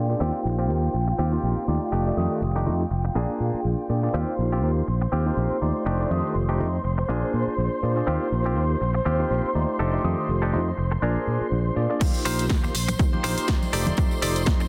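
Densely limited and lightly reverberant, this funky, sunny filtered disco house fragment opens with a filter sweep over bell-like tine electric piano with phaser, dark woody violin section chords, an up-front fingered electric bass and a twangy clean guitar riff with 12-bit sampler grit, all pumping under the filter on Eb69, F13 and Bb7 changes, until the drop at 12.0 seconds brings in an overdriven punchy kick, an analog drum machine's snare, hi-hat and crash, and dry tambourine and congas in the background.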